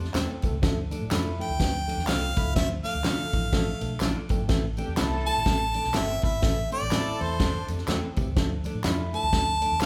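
A driving, urgent slice of uptempo 1960s-style soul with a swung feel opens on a punchy, fat-snared country drum kit, a round, foam-muted electric bass, a mellow tine electric piano that adds a brief fill, and a dark, clean guitar riff bathed in spring reverb, joined at once by very quiet, slightly broken-up guitar stabs from a small old amp and background handclaps and tambourine, before an up-front, close-miked harmonica takes the jazz-style melody with scooped notes and tongue slaps from 1.4 seconds and a distant bowed string section adds a smooth second line between 4.8 and 7.6 seconds, the band playing live together in one room with moderate studio reverb.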